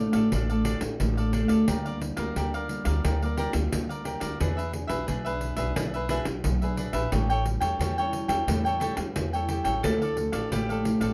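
A straight 4/4 pulse at 88 BPM carries this nostalgic, bittersweet samba and choro passage in D harmonic minor, with a dark, thumpy pizzicato upright bass on gut strings sitting up front and a jingly pandeiro in the live room. A crisp, picked cavaquinho and a small-sounding, thumb-plucked nylon-string guitar with audible finger squeak move through Dm, Gm7/D, E7 and A7 in a wet small room. At 9.8 seconds a bright, woody mandolin with double strings adds a brief second line as the harmony settles on Dmadd9.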